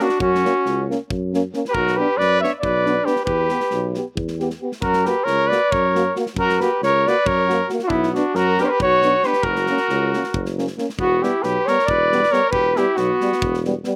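Recorded outdoors with little reverb, this dry, fiery yet bittersweet Balkan brass band excerpt drives along at 272 BPM in 7/8, moving through F#, Bm and Em chords before shifting to a new section at 11.0 s. An up-front, mellow cornet carries the classical-style melody with a distant, roomy tone and slapback echo, while a bright trumpet with vibrato and a smooth top plays the second line. A trombone with light vibrato and a vintage-toned euphonium fill out the accompaniment, a warm tuba holds the bass from 0.2 s, and a big acoustic rock kit adds a punchy kick and medium-tuned snare.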